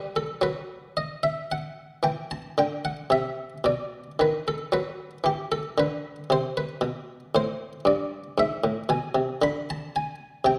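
A rubato 3/4 pulse at 57 BPM carries this grave, solemn baroque-style suite movement in E minor, where a solo buff-stop harpsichord in the Italian style plays alone from G2 to B5 with a muted, lute-like, dry pluck set up front in a moderate recital hall, moving through chords such as D#dim, B7/D# and Em before the fragment is cut from the longer piece at 10.6 seconds.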